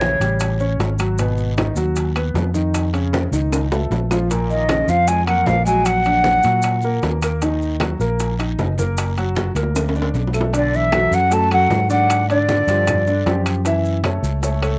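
Sultry and driving, this Afro-Cuban jazz excerpt runs at 154 BPM in a straight 4/4 and settles into B minor from 10.5 s. An airy, straight-toned silver flute carries the melody up front, shadowed by a single bowed cello with focused vibrato in the background. Beneath them an intimate grand piano with audible action noise accompanies throughout, a dark, punchy fingered electric bass sits up front, and a percussion bed of thick, low-tuned congas, very quiet round bongos, ringing metal-shell timbales, woody claves, a raspy guiro and grainy maracas drives the groove, with drum fills breaking in at 3.1 s and 9.4 s inside a short booth ambience captured on home cassette.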